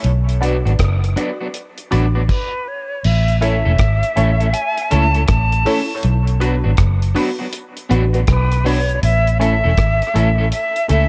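Spacious and laid-back, this dub reggae excerpt moves in a swung 4/4 over a cycle of Bm and A chords. A dark, round, foam-muted electric bass sits up front with a punchy, amped tone. A deep reggae drum kit adds a tight kick, hi-hat, rim clicks and crash cymbal, with a dry, smooth sound and a rolled-off top. From 0.4 seconds, a twangy electric guitar at the edge of break-up and a filtered chord stab built from detuned sawtooth and pulse waves fill out the accompaniment, both trailing dub echo, and the stab adds a fast-attack, short-decay pluck and phaser. A brief stop arrives at 2.3 seconds, and a breathy silver concert flute enters there, carrying an expressive melody up front with vibrato, a soft attack and its own dub echo. Light studio reverb and a gently dulled high end keep the mix roomy and relaxed.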